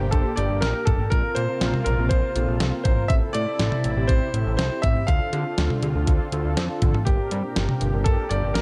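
A straight 4/4 pulse at 121 BPM drives this synth-pop excerpt, set by a clean 12-bit drum machine that enters at 0.1 s with a thumpy kick, fat snare, hi-hat, toms and cowbell, sitting up front with a sampler-style edge. Beneath it, a fat analog bass built from detuned sawtooth and square waves holds the low end with a fast attack and a filter sweep, also placed prominently. A mellow synth brass part supplies accompaniment in a brassy, round, dark tone with vibrato, a filter swell and chorus, while a lush unison pad of warbling, vintage sawtooths sustains chords in the background with a slow attack and long release. On top, a clear, intimate grand piano carries the melody in a natural tone, its action noise audible and its line trailed by tape echo. In G dorian, the harmony moves from Gm through Bbsus2, Am and Dm back to Gm, giving the driving groove a melancholic cast inside a digital ambience.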